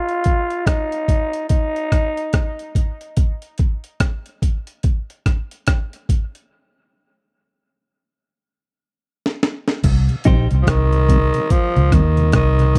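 A raspy, growling tenor saxophone with dub echo opens this deep, spacious dub reggae excerpt over a compressed, pitched-up sampler-style drum break with a thumpy kick and high-tuned snare, and after a drum fill from 8.2 seconds, a dark, round, foam-muted bass lands on a C minor chord at 9.8 seconds, followed by a soft, flute-like tonewheel organ through a slow rotary speaker and a brief clean guitar figure with spring reverb and dub echo, before the saxophone returns at 10.6 seconds, all captured in a dry, close 1970s-style studio sound.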